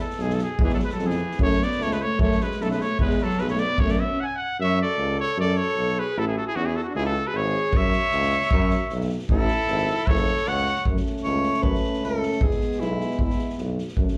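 A clear trumpet opens this fiery, bittersweet Balkan brass band excerpt at 153 BPM in 2/4, carrying the melody up front in F# minor with light vibrato, a soft attack and a smooth top, set in plate reverb and slapback echo. Almost at once a street-band drum kit with a boomy kick and medium-tuned snare joins in, along with a vintage-toned tuba anchoring the bass up front, while a mellow French horn and a punchy euphonium with vibrato sit in the background as accompaniment. An alto saxophone adds a second line coloured by slapback echo and plate reverb, and the tempo pushes faster throughout. After a brief stop at 4.2 seconds the band drives on over A5, C#5 and F#5 power chords before settling back onto F# minor and E. The horn and euphonium drop out for the middle stretch, and at 10.9 seconds the trumpet gives way to an alto saxophone solo as horn and euphonium return. The sound is a live gig heard through the venue's PA, with club ambience and light reverb framing the airy, polished drums.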